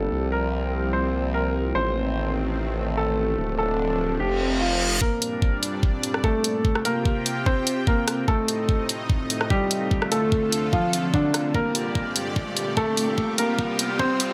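This heavy, menacing wobble dubstep excerpt in G minor opens with a worn baby grand piano carrying the melody up front, its long sustain trailed by delay, over a lush, detuned supersaw pad filtered down and pumping against the beat, and a deep, moody ambient pad sitting in the background. Underneath, a saturated formant-sweep wobble bass with chorus and overdrive growls through the opening until 5.0 seconds, while the supersaw's filter sweeps and a reverse cymbal and riser creep in from 4.3 seconds. At 5.0 seconds a knocking electronic kick lands up front in a half-time feel at 147 BPM, joined moments later by a layered dubstep kit of hi-hats and rim clicks, both touched by small room ambience. From there the track builds steadily, with a drum fill closing out the final stretch. The chords circle through Csus4, Adim, Dm and Gm, and a moderate plate reverb glues the mix together.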